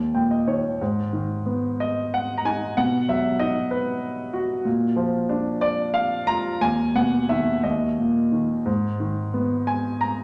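A brief grand piano fill opens this reflective, wistful excerpt of lyrical classical solo piano in 6/8 with free rubato, the smooth, vintage-toned instrument sitting up front as it moves from G#m through B, A# and Emaj9/D# to a D#5 at 7.6 seconds before settling back on G#m, set in a recital-hall reverb that lingers for about 1.5 seconds.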